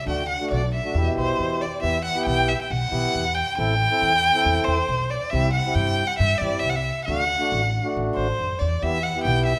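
A straight 4/4 pulse at 137 BPM drives this bittersweet, soulful klezmer passage in E minor, cut from a longer piece and moving through D, Em, Am, C and D before settling back on Em. Up front, a single bowed violin carries the melody with a dark, nasal, somewhat boxy tone, singing expressively with vibrato and portamento, while a mellow, reedy accordion supplies round, warm accompaniment and a pizzicato upright bass adds a woody, growly foundation. A moderate recital hall reverb gives the trio a sense of space.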